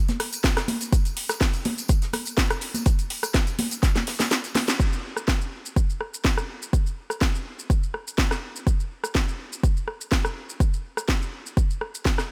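This soulful, energetic house excerpt runs at 124 BPM in a straight 4/4, built on a punchy, up-front electronic kick and a layered house kit with a cracking snare, metallic hi-hats, rim clicks and shaker. Underneath, a very quiet, dry 70s kit with a fat snare and small-room tambourine and congas add acoustic texture. A drum fill begins at 3.8 seconds, the kick drops out at 4.3 seconds, and after a band accent the 70s kit and hand percussion stop at 4.8 seconds, leaving the electronic kick and house kit to carry on in light reverb.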